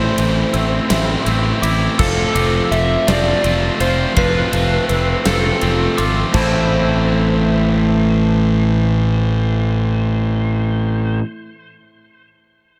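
Post-rock at a slow 55 BPM in 6/8 and A minor, this melancholic, brooding fragment moving from Am to F sets a dark overdriven slide guitar melody over a double-tracked, cranked stack guitar riff up front, round fuzz fingered bass, and twangy clean electric guitar arpeggios and bell-like glockenspiel arpeggios in the background, the glockenspiel dropping out at 6.7 seconds, while a huge arena drum kit with a fat snare, punchy kick and bright cymbals plays from 0.2 to 6.5 seconds, all within a dreamy mix soaked in plate reverb.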